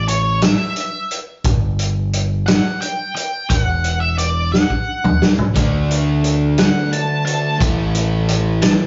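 Anthemic and bittersweet, this short cut from a longer piece of quiet-loud alternative rock sways in a straight 6/8. An octave-fuzz lead guitar carries the melody up front from the start, its distorted tone paired with a growling, overdriven electric bass that sits equally forward, bright and direct. A loose indie drum kit with a punchy kick and medium-tuned snare sounds saturated and gritty, its top rolled off, and a drum fill arrives at 4.5 seconds. At 5.5 seconds two overdriven guitars join with a riff, one biting and one crunchy, over a D5 chord, while a very quiet, slightly broken-up guitar through a small old amp adds compressed arpeggios underneath. The whole take has the rough feel of a rehearsal room, wrapped in a moderate stone-room reverb with a dulled high end.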